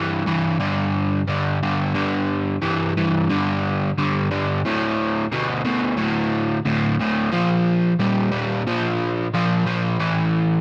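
An overdriven semi-hollow electric guitar, picked and double-tracked, sits up front and plays alone for the whole 10.6 seconds of this smoky, heavy rock excerpt. At 90 BPM in a straight 4/4, it moves through power chords G5, D5, Bb5 and A5 in a low register, its hollow-body tone warm. A light reverb gives the room a touch of space.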